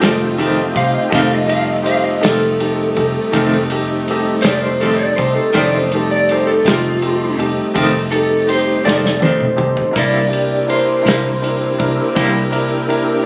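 Laid-back and rollicking, this slow blues in F mixolydian moves at 54 beats per minute in a straight 12/8. A clean, picked electric guitar carries a solo through the excerpt, its tremolo adding shimmer to the accompaniment it also provides, while a second guitar through a small old amp, slightly broken-up and lo-fi with harmonic tremolo, plays a higher line. A clear concert grand piano with audible action noise and a tonewheel organ with key click, chorus vibrato and a slow rotary speaker fill out the middle, and a soft-attacked saxophone section holds sustained chords in the background. A dark, foam-muted fingered bass and an airy country drum kit with a punchy kick anchor the groove, and the drums play a fill from 8.9 to 10.0 seconds, leading into the harmony's move from F7 to C7 at 10.0 seconds. Light reverb and small-room ambience give the whole a close, compressed sound, as if heard from inside the room.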